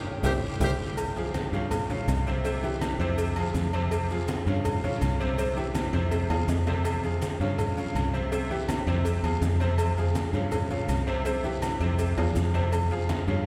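A straight 4/4 salsa groove drives along at 163 BPM in F harmonic minor, giving this fiery excerpt from a longer piece its urgent, driving pulse. A punchy, tight horn section plays a short melodic figure from 0.2 to 0.7 seconds within an opening band accent, sitting back in the mix before dropping out. Up front, a bright, woody upright piano with a slightly detuned, open character carries the accompaniment through the cycle of C7, Fm, Dbmaj7#11 and C. Beside it, a dark, foam-muted fingered electric bass holds the low end with a direct, amped tone. The percussion bed blends thick-skinned, low-tuned congas played with soft hands, a round cowbell, ringing metal-shelled timbales and agogo bells, a raspy guiro and grainy, mellow maracas, with drum fills marking moments such as 6.3 seconds. A wet cathedral reverb bathes the whole ensemble in the long, echoing space of a church or concert hall.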